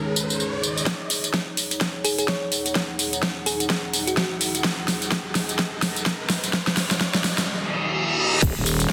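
A growling FM bass slams in at 8.4 s, thick and overdriven on a low Eb1, arriving up front with the impact that closes this aggressive, swaggering bass house build-up at 127 BPM in Eb minor, set in 4/4 with a swung sixteenth feel. Before it, a dark analog pad holds moody, detuned chords on Ebm with chorus and sidechain pumping, while a warbly tape-like pad adds a nostalgic, lo-fi haze with its own built-in reverb. A big-room dance drum kit drives the build with a huge snare, metallic hats, crash and tambourine, joined by a tight layered electronic kick from 0.9 s, as risers, a drum fill and a filter sweep on the analog pad push toward a reverse cymbal and sub drop. Between 2.0 and 4.3 s a round, tine-like thumb-piano-like synth pluck offers a gentle, mellow phrase through chorus and digital delay. A background shaker and snare drum, acoustic with a pumping room sound, appear only alongside the bass at the very end. 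The whole is bathed in a lush hall reverb and pressed into a dense, heavily limited modern master.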